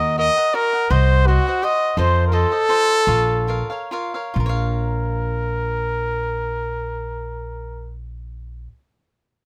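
Passionate and dramatic, this short cut from a longer mariachi piece unfolds in a flexible, rubato three-beat feel rooted in Mexican folk tradition. A trumpet carries the melody up front, its tone warm with light vibrato, a soft attack and a classical poise. Beneath it, an upright bass plucks gut strings with a woody, thumpy presence that sits close in the mix, while a picked acoustic cavaquinho adds crisp, bright accompaniment higher up. The harmony moves from Ebm through Cdim and F7 to Bbm, and the music slows between 2.0 and 4.4 seconds before a second section begins. The trumpet falls silent at 8.0 seconds as the bass and cavaquinho ring on briefly, all captured with close, detailed microphones and a light reverb.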